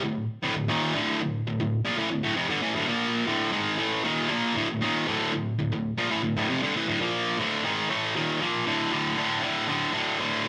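A single overdriven electric guitar opens this dark, relentless metal excerpt, bright, picked and double-tracked, sitting up front in a moderately reverberant large studio room as it plays alone from the low to the middle of its range over a D minor chord. At 8.7 seconds the part shifts to a D power chord, carrying the straight, steady drive until the cut at 10.5 seconds.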